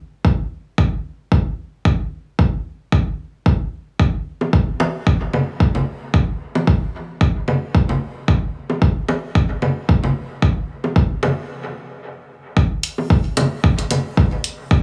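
Hypnotic and deep, this techno excerpt moves at 112 BPM in 4/4 with a light swing on the sixteenths. An electronic kick drum opens at 0.2 seconds, deep, layered and up front, carrying the small-room ambience of a re-recording. Bongos and congas join at 4.4 seconds, produced and forward in the mix, their sound pumping against a sidechain and trailing dub echo. A stop from 11.5 to 12.6 seconds breaks the flow before a short closing section, where an electronic hi-hat, also re-recorded in a small room, appears briefly near the end. The overall sound stays dry and close, with little reverb around the parts.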